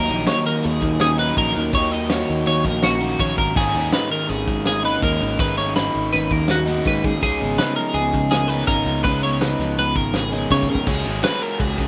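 A clean, compressed twelve-string electric guitar sits up front with high arpeggios bathed in analog chorus and delay, joined from the start by a crunchy, double-tracked overdriven guitar riff, a round, direct picked bass and a fingered, dark clean guitar tucked in the background, in a restless math rock and midwest emo passage at 164 BPM in 5/4. A loose indie drum kit with a fat snare, punchy kick and dark cymbals carries the intricate groove over Abm11 moving to Db13 at 7.2 seconds, and a drum fill at 10.5 seconds leads into a brief Db7sus4 turn where the background guitar stops at 10.9 seconds. Light reverb and a rough home demo mix give this cut from a longer piece an unpolished feel.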